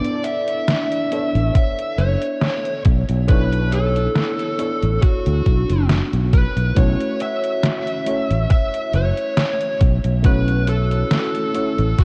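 A dreamy, reverb-soaked cassette haze frames this melancholic, woozy vaporwave excerpt in B minor at a slow 69 BPM with a light 16th-note swing, where a dark, smooth overdriven lead guitar carries the melody through tape echo over a soft, round, warbling FM electric piano bathed in lush chorus and delay, a detuned 8-bit drum machine ticks out hi-hat and snare, a thumpy electronic kick sits up front from 1.6 seconds, and a fretless electric bass enters at 1.3 seconds, all moving from Bm11 to F#m7 at 6.8 seconds.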